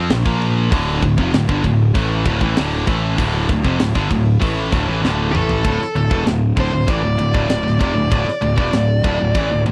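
A high-gain lead guitar with slapback echo steps up front at 5.3 s to carry a short melody over this dark, epic heavy metal excerpt, where a scooped, bright rhythm guitar and a tight distorted second guitar drive the riff above a growly, up-front fuzz bass and a tight acoustic kit with a high-tuned snare, whose fill at 5.0 s leads into the second section, all set in a dry, close 1970s-style studio sound with light reverb.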